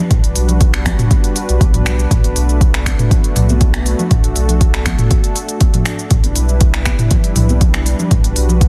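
Spiritual and driving, this short afro house cut moves at 120 BPM in a straight 4/4, sitting in B minor with its tuning set slightly low at A4 = 438 Hz. A deep, overdriven electronic kick sits up front, its layered, produced punch re-recorded in a small room, while an afro-pop kit of finger snaps, smooth hats, shaker and toms fills out the groove with softly clipped snare. Hard-handed congas enter at 0.5 seconds, bright and acoustic but tucked into the background. Underneath, a round sine sub bass with a fast attack holds sustained low notes and pumps with sidechain compression. A detuned sawtooth pad with a slow attack spreads mellow sustained chords through Gmaj7, Bm7 and Em7, coloured by chorus, vintage 12-bit sampler grit and its own sidechain pumping. The sound is dry and dense, with a heavily limited modern master that keeps the whole groove pressing forward.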